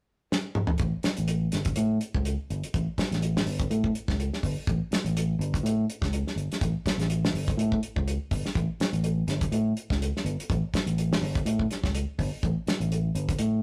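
Hypnotic and funky, this afrobeat excerpt moves at 124 BPM in A mixolydian with a lightly swung sixteenth-note feel. A damped 70s drum kit opens with a short fill at 0.3 seconds, its dry, medium-tuned snare, tight kick, hi-hat and toms sitting up front with a rolled-off top, before a fingered electric bass enters at 0.8 seconds with a dark, round, punchy tone between G1 and A2. The rough rehearsal-room recording carries warm saturation and moderate studio reverb.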